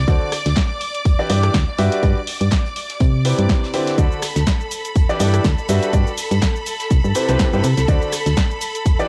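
A bright, lush violin section opens on sustained chords alongside a round, dark FM bass at the very start of this euphoric, feel-good piano house excerpt. A clear, open baby grand piano riff with short sustain joins almost at once, sitting up front over a swung groove and a cycling progression of D7, Em7, Gmaj7 and Cmaj7. The drums stack a punchy, layered electronic kick, an analog drum machine carrying hi-hat, rim click, shaker and a punchy snare, and a very quiet brushed kit that sounds distant in a small room. Sidechain pumping makes the strings, bass and piano breathe with the beat, while cassette tape lends the strings, piano, kick and drum machine a tape-warm haze. The mix is dry, with the biting, vibrato-laden strings set back behind the prominent piano, bass and kick.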